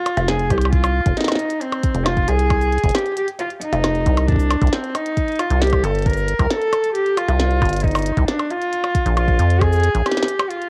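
A bowed cello opens this eerie, glitchy IDM excerpt in F minor at 135 BPM, its nasal, reedy gut-string tone carrying the melody through vintage 12-bit sampler grit, cassette tape and analog delay. A rubbery, resonant acid bass with a dark square-wave pluck sits up front, joined by a deep electronic kick, while a glitchy kit of tiny snare, clicky hats, cabasa and percussion blips ticks over a straight 4/4. The harmony moves from Fm7 to Cm and then Bb5, and the whole home-recorded cassette sound carries a light reverb.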